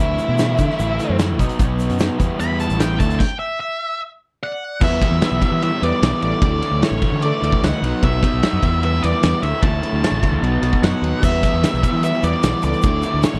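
A fuzz-drenched octave lead guitar solos over the opening of this moody, bittersweet indie rock excerpt, backed by a dark crunchy guitar and a raw garage guitar in the background, a punchy fingered bass, an up-front loose drum kit in a pumping room and a faint grainy shaker, until a stop at 3.2 s leads to a worn, slightly out-of-tune tine electric piano with tremolo entering at 4.4 s.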